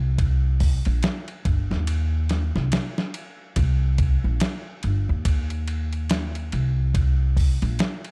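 Hypnotic and brooding, this short trip hop excerpt pairs an up-front, woody pizzicato upright bass with a gritty, compressed sampler-style drum kit of thumpy kick, medium-tuned snare, hi-hat and ride, its tape-warmed hits re-recorded in a large room, all set in a dark, dry production with a loose swung feel.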